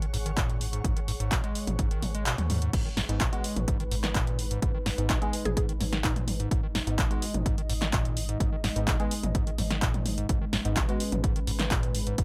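A straight 4/4 acid house groove at 127 BPM drives this gritty excerpt in G# minor: an up-front analog drum machine with a punchy snare, handclaps, hi-hat, toms and crash runs throughout, a tape-warm kick thumps beneath it, and a squelchy, resonant overdriven acid bass riff with a filter sweep rides over a thick, saturated sub bass. A blurred granular cloud pad hovers in the background through the opening, the kick briefly falls away at 2.3 s with a band accent, and the drop lands at 2.7 s as the pad fades. From 3.1 s a moody, detuned analog pad holds sustained chords alongside hollow, organ-like stabs with chorus and digital delay, while a woody mallet-like pluck slips in a short melody from 5.5 s, all in a dry, close-sounding mix.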